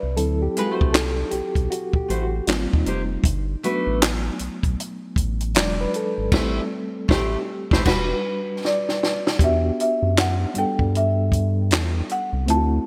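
Bright, 1980s-style digital production with light studio reverb frames this sultry, late-night neo-soul excerpt, where a mellow, reedy electric piano with fast tremolo carries a solo through the opening 9.4 seconds over a round, deep analog bass and a dry, compact cocktail kit with a punchy kick, high-tuned snare, handclaps, dark cymbals and gated reverb. A full-bodied, fingerpicked nylon-string guitar adds a second line through lush chorus until 8.1 seconds, and amid a band accent and a drum fill, a woody marimba with rosewood bars takes the melody with delay from 8.7 seconds. The swung groove moves through jazzy extended chords such as D9, G#maj9, E7 and Em9.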